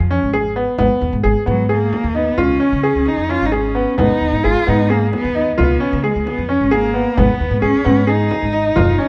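Pensive and restless, this short excerpt of contemporary chamber music moves in an uneven 7/8 at 264 eighth-note beats per minute, with a straight feel, in G# dorian. A rich, focused cello carries the melody, played bowed by one player with vibrato and set up front. Beneath it, a pizzicato upright bass with steel strings gives a woody, dark low line, while a bright grand piano, brilliant yet worn with short sustain, plays arpeggios from 0.1 seconds. A deep, large frame drum sits very quiet in a small room, adding percussion from 0.3 seconds. The harmony circles between G#m, C# and C#7, and the production is dark with light reverb, every part sounding until close to the end of the clip at about 9.1 seconds.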